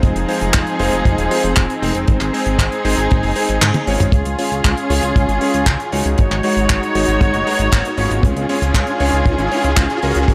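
Italo disco at 117 BPM in a straight 4/4, bittersweet yet danceable, with a muted, veiled string section holding up-front bowed chords with vibrato over a glossy, nasal chorused synth bass with tube saturation and a mellow sustain. A tight, dry kick drives the groove alongside a damped 70s kit of handclaps, hi-hat and toms, while a clear, clangy electric grand piano plays short stabs through a low-pass filter and analog delay, its filter sweeping from 4.1 seconds as the chords move from Fm7 and Ab to Db. The kick drops out for a drum fill and band accent at 3.6 seconds, and a very quiet electronic riser creeps in at 5.8 seconds, all in a small, lightly reverberant room with a dry, gritty hardware character.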